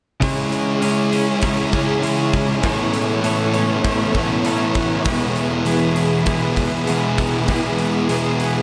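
A straight 4/4 pulse at 99 BPM from a gated 80s drum kit, its punchy kick and hi-hat ringing in a bright stone room, drives this hazy, blissful shoegaze and dream pop rock fragment, where an up-front, thick fuzz guitar plays a riff with subtle chorus, a compressed, direct-recorded clean electric guitar riff trails reverse reverb, a very quiet, shimmering, octave-doubled twelve-string acoustic guitar picks arpeggios, and a mellow, vintage sawtooth string machine cello patch holds slow-attack chords with ensemble chorus in the background over C#m, Aadd9 and E, all bathed in a huge ambient reverb of 7.9 seconds that soaks the dreamy mix, with nothing above 10.3 kHz.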